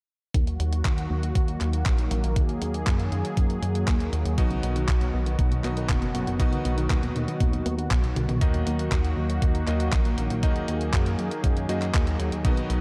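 Italo disco with a bittersweet, melodramatic mood, this short section cut from a longer piece moves at 119 BPM in a straight 4/4. A thumpy, tape-warm electronic kick sits up front, joined by a clean, sampler-style drum machine supplying handclaps, hi-hat and toms, and a drum fill arrives at 8.2 seconds. Underneath, a glossy, retro chorused synth bass built from pulse and sawtooth tones holds the low end with a mellow, plucky attack, while a smooth, detuned sawtooth pad sustains soft-edged chords through the whole passage. At 4.4 seconds a warbly, dusty lo-fi pluck enters in the background with chorus and tape echo on its arpeggios, playing until 8.4 seconds, and a cutting, clangy vintage electric grand piano adds filtered stabs with tape echo from that same point onward. The harmony moves from E-flat minor to B and back, and the production is dark and warm, with light reverb and a digital ambience.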